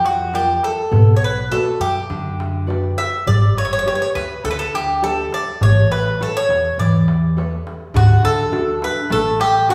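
A wet studio reverb wraps this short Greek folk passage, which captures a bouzouki band playing live together in one room. Up front, the picked bouzouki carries the melody with a bright, metallic ring from its double strings, some of them doubled at the octave. Beneath it, a fingerpicked nylon-string guitar adds full-bodied classical accompaniment, while a woody, thumpy pizzicato upright bass holds the low end. The darbuka sits in the background, its clay shell and natural skin giving a large, deep tone. The mood is relaxed and warm in a straight 4/4, moving through Bm, G and Aadd9 before the music shifts into a new section on D at 7.9 seconds.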